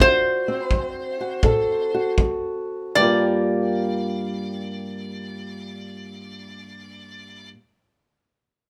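A metallic, nasal resonator slide guitar, played with fingerpicks, carries the melody up front in this mournful, brooding fragment of acoustic country blues in G minor, swung at 75-86 BPM and slowing over the first 3.0 seconds. Beneath it, a fingerpicked old ladder-braced acoustic guitar with old strings gives a dark, woody, boxy accompaniment, moving from D7 to Gm7 at 3.0 seconds. A tight, roomy kick drum with brushes and a rolled-off top sits in a small room and drops out at 2.4 seconds.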